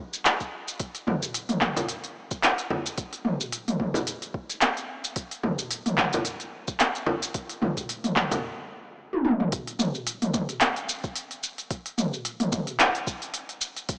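A gritty, dry recording with the character of cassette tape and a small speaker, set in a lush hall reverb, carries this short cut from a longer downtempo piece. The mood is earthy and mystical, moving at 110 BPM in 4/4 with a gentle swing on the sixteenths. Up front, an organic electronic drum kit, re-recorded in a small room, brings crisp hi-hats along with handclaps, shaker and toms, while a soft electronic kick sits beneath it. A deep, large acoustic frame drum, played with hard hands in a small room and also placed up front, joins at 1.1 s and drops out at 8.4 s. A drum fill arrives at 9.1 s and leads into a new section that carries on to the end.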